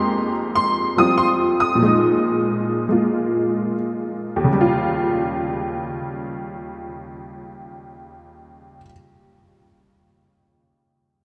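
A detuned, jangly honky-tonk upright piano sits bright and up front in this playful solo jazz fragment, cut from a longer piece in Eb mixolydian, swinging at 84-98 BPM and slowing through its first 4.5 seconds as Fm11 and Bb7sus4 give way to Eb9, all bathed in the long cathedral reverb of a church or concert hall.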